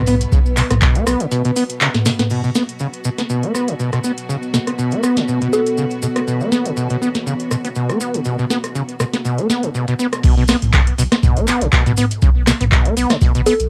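A squelchy, distorted acid bass riff drives this gritty, driving acid house excerpt with sidechain pumping and analog delay, set over a booming overdriven drum machine with crisp snare and metallic hats, grainy maracas, a very quiet cloth-damped kit, a round sine sub bass, distant biting symphonic strings and a moody detuned ambient pad. A woody mallet-like synth pluck appears briefly through chorus and phaser before the strings and pad stop at 10.2 seconds, and a deep overdriven electronic kick returns for the drop, all captured as a home cassette recording in a small, wet booth.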